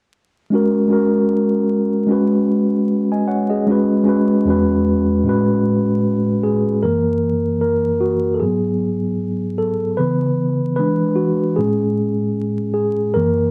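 A mellow, clean tine electric piano sits up front from 0.5 s, playing alone through a low-pass filter and spanning E2 to G#5 over a hazy, nostalgic hip hop groove at 76 BPM with a gentle 16th-note swing, moving from F# through G#m7, Eadd9 and Amaj9 before taking a solo at 6.8 s over F#7, C#m7, E9 and Amaj7, all wrapped in a dark, warm production with a short, wet studio reverb and a bed of vinyl crackle in this excerpt from a longer piece.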